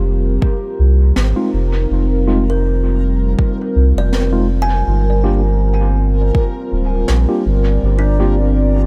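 A dry cut from a longer meditative ambient dub piece at 81 BPM, moving from Fm7 to Gm7, built on a round, up-front sub bass, a moody chorused pad, a woody kalimba ringing through dub echo, a reversed, granular swell in the background, a tape-warm electronic kick that plays from 0.4 to 6.5 seconds, a brushed small-room snare with dub echo, and mellow electric piano stabs echoing softly behind.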